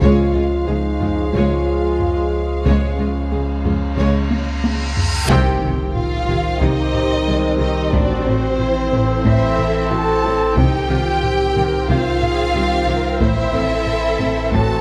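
A lush, vibrato-rich violin melody with a soft attack and portamento leads this relentless, futuristic hybrid orchestral and electronic film cue at 91 BPM, backed by a focused second violin line, expressive violas, present trombones, mellow French horns, a very quiet evolving wavetable pad, a dark chorused and delayed round pluck playing arpeggios, a deep sine sub bass, very quiet cellos and distant double basses, and hard-stick taiko drums, as an electronic reverse cymbal rises from 3.6 seconds into an impact at 5.3 seconds, where the harmony moves from Db to alternating C minor and A minor in a moderate scoring-stage reverb.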